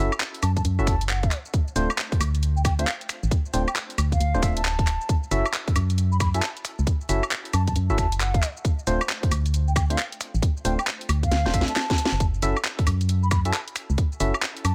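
UK garage in a two-step style, this moody, skippy cut from a longer piece moves at 135 BPM in 4/4 with a swung 16th-note feel, sitting in F# minor as the chords shift between F#m7 and Dm7. A hollow, organ-like FM bass with a fast attack and decaying tone sits up front in the low register, alongside a tight, layered electronic kick drum. The garage drum kit adds a cracking snare, bright hats, finger snaps, handclaps, shaker and woodblock, with a drum fill from 11.3 to 12.2 seconds. Dark, percussive organ stabs built from sine and triangle tones with a noise layer are coloured by chorus, cassette tape character and digital delay, while a baroque flute enters at 0.4 seconds with a pure, woody tone, gentle vibrato and a soft attack, carrying its own digital delay. The mix is dry with studio ambience on the drums, and a prominent layer of vinyl crackle runs throughout.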